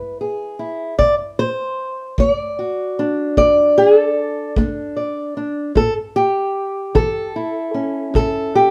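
A fingerpicked old ladder-braced acoustic guitar carries the melody up front with a dark, woody, boxy tone from old strings, joined at 1.0 seconds by a tight, small-room kick drum played with brushes, giving this short, swaggering, rollicking cut of acoustic country blues in a straight 12/8 the feel of a duo playing live in one room under moderate reverb.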